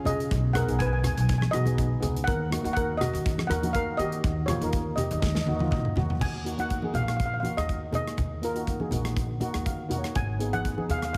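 A lightly swung calypso groove in 4/4 moves at 122 BPM, carrying an intense, tense mood in Eb minor through this short cut from a longer piece. Up front, a lead steel pan struck with medium rubber sticks carries the melody with a metallic, shimmering ring. Beneath it, a double seconds pan played with soft rubber sticks supplies a mellow, soft accompaniment set in a boxy small room. A woody, growly pizzicato upright bass with steel strings anchors the low end. A punchy modern studio drum kit with brilliant cymbals and a medium-tuned snare sits up front, while low-tuned, thin-skinned congas add percussion from the background. A drum fill at 5.2 seconds leads into a new section at 6.2 seconds, a steel pan fill arrives at 9.4 seconds, and the whole track carries light reverb and a heavily compressed, radio-like sound.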